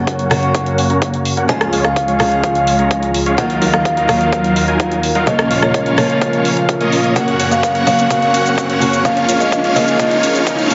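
Huge, bright supersaw chords sit up front in this festival progressive house build-up at 127 BPM, their detuned sawtooth riff pumping against the sidechain while a filter sweep runs across the whole clip, cut from a longer piece, with digital delay trailing behind. A woody, hollow kalimba carries the melody with a soft, ringing fingertip pluck, while a boxy fingerpicked acoustic archtop guitar adds accompaniment and a thick, warbling vintage pad holds sustained chords underneath with chorus and a slow attack. The harmony moves from Gb to Db, Ebmadd9 and Bbm before returning to Gb and Db, giving the passage an anthemic, emotional lift. A punchy, layered electronic kick sits in the background alongside a big-room kit of metallic hi-hats, rim clicks and shaker, and a very quiet riser creeps in at 4.0 seconds ahead of a drum fill from 7.2 seconds. The mix is drenched in a lush 2.2-second hall reverb yet squeezed into a heavily compressed, radio-like sound with the top end rolled off.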